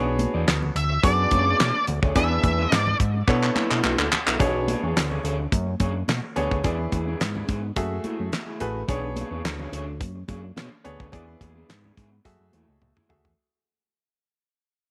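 A straight, steady groove drives this slick, danceable early-eighties boogie funk clip, cut from a longer piece. The damped 70s drum kit sits up front with a fat snare, tight kick, hi-hat, toms and handclaps, and a fill rolls in at 3.3 seconds. Beneath it a thick sawtooth-and-square analog bass with a filter sweep and moving notch holds the low end, while bright, high-tuned congas and a dark, slightly broken-up electric guitar riff with subtle chorus tick along in the background. A clear, intimate baby grand piano, its action noise audible, comps through rich minor-ninth and dominant-seventh changes. Between 0.8 and 3.0 seconds a snarling octave-fuzz lead guitar cuts in up front with distortion and tape echo, and from 4.4 seconds the whole groove fades out under light reverb.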